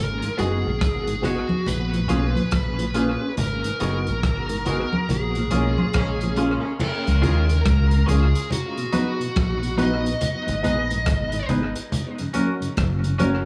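An echo-heavy, dry mix with small room ambience frames this hypnotic, serious roots reggae excerpt at 70 BPM in G# dorian, with a swung sixteenth feel and a band accent in its first half. A round, punchy dub bass sits up front beneath a gritty breakbeat kit with a tight kick and dark cymbals, hard-handed congas, a clean, twangy guitar with spring reverb and tape echo, an intimate baby grand piano with audible action noise playing background stabs, and a lightly overdriven tonewheel organ with chorus vibrato, slow rotary speaker and analog delay. A distorted, high-gain lead guitar carries the melody through tape echo until 11.5 seconds, while a distant, mellow horn section adds a brief second line at 5.5 seconds as the chords move from G#m7 and A#m7 to C#, B, G#m and F#.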